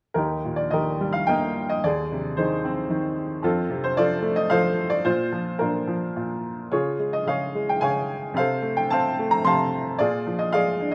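A bright upright piano opens at 0.1 s and plays alone throughout, its woody, brilliant tone and short sustain sitting up front in a light reverb. This relaxed, hopeful classical fragment moves in a lyrical three-beat rubato, ranging from low bass to high treble as the harmony drifts through Ab/Eb, F, Bb and Db before reaching Bb7 at 10.0 s. It is cut from a longer piece and ends at 10.9 s.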